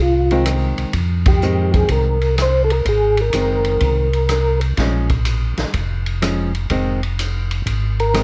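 Soulful and late-night, this brief soul jazz organ trio excerpt swings at 125 BPM in F minor, moving from Fm7 to Bbm7 at 4.8 seconds and back to Fm7. A soft, flute-like tonewheel organ carries the melody with percussive attack, chorus vibrato, a slow rotary speaker and plate reverb, pausing at 4.6 seconds before returning briefly at 8.0 seconds, while a second, round and dark organ with key click and slow rotary holds the bass up front. A clean, compressed hollow-body electric guitar comps, and an acoustic drum kit with dark cymbals and a punchy kick plays hi-hat, ride, rim click and snare, with a band accent at 1.2 seconds, all under a worn, warbling cassette-tape sound with light reverb.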